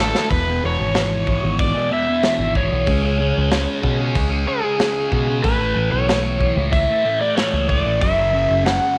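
A straight 4/4 groove from a crunchy, gritty breakbeat drum kit, opening on a brief fill, drives this hazy, trippy psychedelic rock excerpt, where a thick, double-tracked fuzz guitar with phaser plays the riff beneath an up-front, bright, overdriven slide guitar melody with slapback echo, a deep, round dub bass punches underneath, and light reverb adds a touch of studio ambience.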